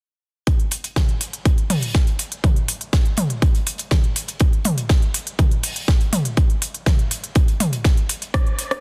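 A straight 4/4 techno pulse at 122 BPM drives this short, cinematic excerpt cut from a longer piece, built entirely from three layered drum parts that enter at about 0.5 seconds, with the kick dropping out near 8.4 seconds and the two kits running on to 8.8. Up front, a punchy, tape-warm electronic kick re-recorded in a small room anchors the groove alongside an overdriven techno kit of smooth hats, rim clicks and toms. Beneath them sits a quieter acoustic studio kit whose filtered hats pump against the sidechain and whose medium-tuned snare adds a roomy snap, all inside a dense, heavily limited master.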